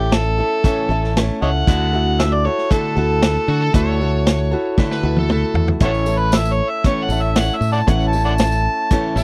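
An overdriven, gritty harmonica carries the melody from the start in this hopeful folk and heartland rock excerpt at 116 BPM in A major, backed by a boxy picked archtop guitar, a bright fingered electric bass and a punchy, mid-forward vintage drum kit, moving from A to Dadd9 and back. A slide guitar played with fingerpicks adds an overdriven second line between 3.5 and 5.7 seconds, and a drum fill at 4.8 seconds brings in a very quiet, worn, slightly detuned upright piano and a jingly tambourine in the background. The sound is dry and close, like a 1970s studio recording, with the harmonica's tongue slaps and light vibrato up front.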